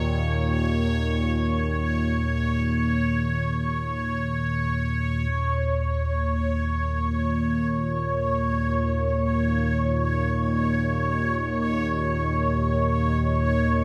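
A warbling, detuned analog drone sits up front from the very start, joined at once by a bright, resonant texture that bubbles through random filter steps, both softened by chorus. At 7.9 seconds a deep, moody pad with a sub octave slips in very quietly behind them. The whole dark ambient piece is steeped in a huge, cavernous reverb with an 8.4-second tail, and it is cut from a longer work.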